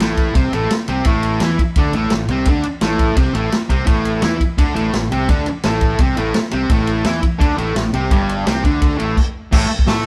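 A band playing live in one room comes through with light reverb in this raw, swaggering slice of garage rock, cut from a longer piece and driving at 170 BPM in a straight 4/4. Up front, a fuzz guitar picks out the riff, its bright, double-tracked tone compressed and distorted as it ranges from G2 to A4 over an A5 chord. A growling fingered electric bass sits beneath it between G1 and A2, its overdriven sound mixing direct and amped signals. The vintage drum kit is just as forward, with a punchy kick, a medium-tuned snare, hi-hat, and dark crash and ride cymbals, all carrying a natural small-room feel and a rolled-off top. The whole band hits a stop at 9.2 seconds, and by 9.5 seconds the chord drops out entirely.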